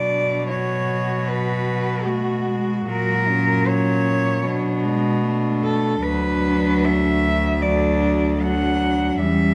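Classical and lyrical, this yearning, melancholic excerpt for four cellos moves at a rubato 76 BPM in 4/4 and settles into B minor at 6.0 seconds: a dark, intimate cello sings the melody up front with vibrato and an airy sul tasto bow, a woody second cello carries an inner line, a distant, floating cello supplies accompaniment, and a nasal, clear bass cello anchors the low end, each bowed by a single player in a recital hall's moderate reverb captured by close, detailed microphones.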